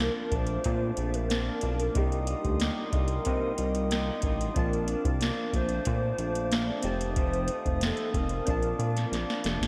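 Indie bedroom pop at 92 BPM in Bb major, sunny and hazy, with a hollow, woody clarinet-like synth lead carrying the melody through analog chorus and tape echo over soft, round electric-piano-like keys and a dark, slightly broken-up guitar through a small old amp with warbly pitch drift, both tucked in the background. A glass harmonica holds ethereal, beating chords above, while an up-front glossy, chorused synth bass and an overdriven vintage rhythm box with deep kick, crisp snare and metallic hats anchor the groove. The chords move from Bbmaj7 through Cm7 and F7, and a drum fill at 9.1 seconds closes this dreamy, reverb-soaked excerpt.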